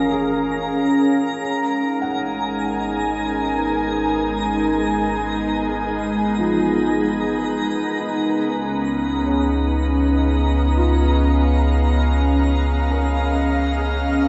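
A dreamy, reverb-soaked mix with a lush hall tail of 2.7 seconds frames this weightless, serene ambient passage, cut from a longer piece. Up front, a pure, bright organ-like pad holds sustained, chorused chords moving from F#maj7 to G#m7 and then C#7 at 8.2 seconds, over a deep, round analog bass. In the background, a mellow felt-muted upright piano plays arpeggios with tape echo and fades out across the clip, while a twinkling granular texture adds an octave-up shimmer high above.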